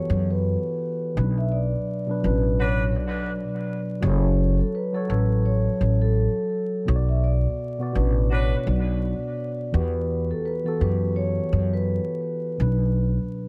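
Hip hop at 84 BPM in B minor, reflective yet tough, with a swung sixteenth-note feel and chords moving between Emadd9, Bm and F#m. A woody, growly pizzicato upright bass sits up front beneath a mellow, clean tine electric piano, while a vibraphone played with soft mallets and its motor off carries a ringing, metallic melody through analog delay until 12.6 seconds. A clear, vintage horn section adds brief stabs at 2.6 and 8.3 seconds, and the echo-heavy mix with studio reverb and vinyl crackle frames this cut from a longer piece.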